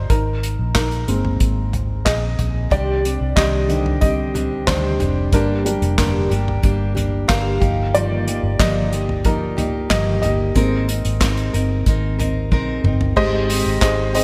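A straight 4/4 pulse at 92 BPM carries this hopeful, anthemic piano-driven pop passage, cut from a longer piece. A dark upright piano takes the lead for the first 13.2 seconds, its mellow, woody tone close and intimate, with audible action noise and a slightly detuned edge. Underneath, a vintage foam-muted electric bass sits low with a round, punchy sound, while an unplugged drum kit played with bundle sticks brings an airy, polished feel through a tight kick, medium-tuned snare, hi-hat, toms, crash and handclaps, closing the phrase with a fill from 12.5 seconds. A fingerpicked steel-string dreadnought enters at 2.7 seconds with a full-bodied riff as the harmony moves from Abadd9 through Cmadd9, Gm and Ebadd9/G, landing on Abmaj7. Light reverb and small room ambience keep the whole arrangement close and natural.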